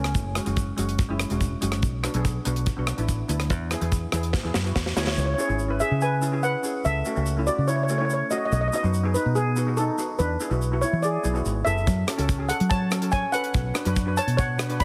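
Bouncy and festive, this calypso fragment moves at 143 BPM in a straight 4/4, with a mellow, up-front steel pan melody played with soft rubber sticks and touched by tape echo, carrying the tune from 5.0 seconds after a brief opening note, over a brighter steel pan accompaniment struck with hard rubber sticks. A foam-muted fingered electric bass sits up front, and a faint, grainy tube shaker runs throughout. A dry, tight-kicked reggae drum kit plays until a fill at 4.3 seconds, drops out, and returns at 11.9 seconds, all within a heavily compressed, radio-like sound with light reverb over chords such as F#sus2, C#m7 and B7.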